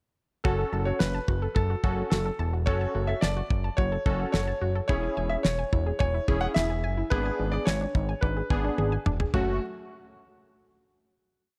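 Light studio reverb gives this short, complete synth-pop piece a polished sound, with the drums and bass sitting up front. In F# minor at 108 BPM in a straight 4/4, it feels melancholic yet driving, moving from F#m through C#m/E and G#dim before returning to F#m for a final chord at 9.3 seconds. A damped 70s drum kit plays a dry, mid-forward drum-machine beat with a fat snare and tight kick, adding a fill from 8.8 seconds, while a thick, detuned sawtooth bass pulses in eighth notes with slides and filter sweeps. Round, bright analog keys with chorus push the chord rhythm in close voicing, and a warm analog pluck with chorus and analog delay ripples through a threes arpeggio in sixteenths. Alongside them, a clear, intimate concert grand piano carries a motif-based melody in sentence-like phrases, its action noise audible.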